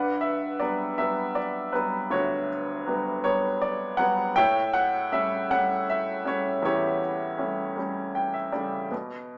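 In a slow, straight 6/8 at 53 BPM counted in dotted quarters, this reflective, intimate fragment of an acoustic folk-pop ballad features a solo upright piano, woody and up front with audible action noise and long sustain, ranging from D2 to G5 over a Gmaj7 that moves to A7 at 4.4 seconds and adding a fill from 7.8 to 8.9 seconds, set in a moderate large-studio reverb with a live-room, small-speaker sound.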